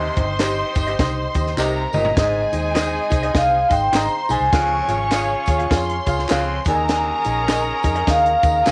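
Vinyl crackle and a light, small-room reverb frame this joyful, danceable 8.7-second excerpt of uptempo 1960s-style soul, swinging at 102 BPM in Ab major over Cm, Ab, Db and Ebsus4. Soft-mallet vibraphone carries the ringing, metallic melody with fast motor vibrato and slapback echo, while a mellow, tube-saturated horn section and a lush, bowed violin section add second lines alongside a woody upright piano with audible action noise. A gritty baritone saxophone riff stops at 7.2 seconds; a round, foam-muted electric bass and a dry cocktail kit with a high-tuned snare drive the groove, with a drum fill at 1.6 seconds, and from 0.4 seconds a slightly broken-up, lo-fi guitar plays chorused stabs beside background handclaps and tambourine.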